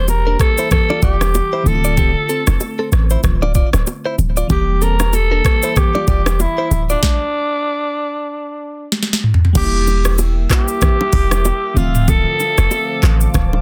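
A dense, heavily limited modern mix with light reverb opens this hypnotic, mellow afrobeats excerpt, cut from a longer piece and set at 95 BPM in 4/4 with a swung sixteenth-note feel. Up front, a raspy, growling alto saxophone carries the melody with vibrato through delay and plate reverb, while a sparkling FM electric piano shimmers beneath it through chorus and phaser, moving over Edim and Dm7 chords. A boomy 808-style bass and an electronic afro-pop kit sit forward in the mix, the kit built on a knocking kick, a sharp snare with soft clipping, metallic hats, handclaps, rim clicks, shaker, toms and crash, while close, dry bongos and congas add bright color in the background. A bright, clean, direct-recorded electric guitar picks a compressed riff with delay until 7.0 seconds, when the band hits a stop broken by a drum fill leading into the next section at 9.6 seconds. From 10.2 seconds a deep, moody, detuned sawtooth pad rises softly in the background, adding dark sustained chords under the closing bars.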